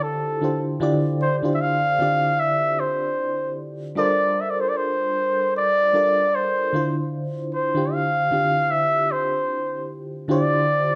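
R&B in D minor at 76 BPM with a lightly swung sixteenth-note feel, this smooth, introspective excerpt from a longer piece features a warm flugelhorn singing the jazz-style solo melody with light vibrato and scooped notes over an up-front FM electric piano whose tremolo-laced chords move from Dm11 to Gm11 and back to Dm9, all played live together in a large studio with a moderate one-second reverb.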